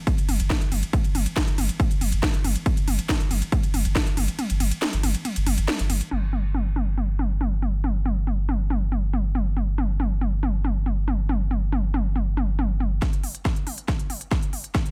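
A heavy, overdriven electronic kick and a layered techno drum kit open this driving peak-time techno excerpt together, with a deep, round sine sub bass joining almost at once, all sitting up front in a digital ambience. At 139 BPM in a straight 4/4, tuned to A4 = 437 Hz, the mood is industrial and intense from the first bar. The kit brings a cracking snare, smooth hi-hats, crash and ride cymbals and toms, its hats, cymbals and toms pumping against the sidechain and shaped by filters, while studio reverb sits on the kit and the kick. The sub bass holds sustained notes around G1 with a fast attack, overdrive, sidechain pumping and a low-pass filter, carrying the low end after the kick falls away at 4.0 seconds. Drums and bass push on through the middle stretch until the bass stops at 13.0 seconds, when the kick returns and the kit launches a drum fill that builds toward the cut at the end.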